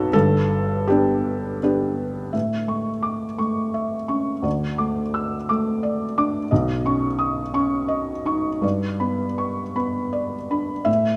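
In a rubato triple time, this short extract from a longer neoclassical minimalist piece unfolds with a peaceful, tender mood, carried entirely by a solo felt-muted upright piano that spans from deep bass to high treble. The piano sits up front with a soft, mellow, intimate tone and audible action noise, moving through G, A, D5 and Badd9 before settling back on G near 8.6 seconds. A moderate scoring-stage reverb adds a gentle halo around the natural sound until the piano stops at 11.2 seconds.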